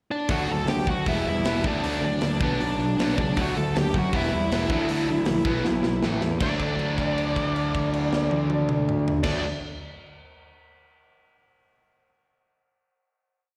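A smooth, overdriven lead guitar with slapback echo carries an up-front, motif-based melody, partly doubled in octaves, over two cranked stack guitars chugging palm-muted eighth notes, a growly fuzz bass driving eighth notes, and a tight metal drum kit in a fast punk groove, in this rowdy, rebellious 157 BPM punk rock piece in D major, heard as a live gig through the venue's PA with recital hall reverb, where a drum fill at 5.7 seconds leads into a final held D chord from 6.4 seconds.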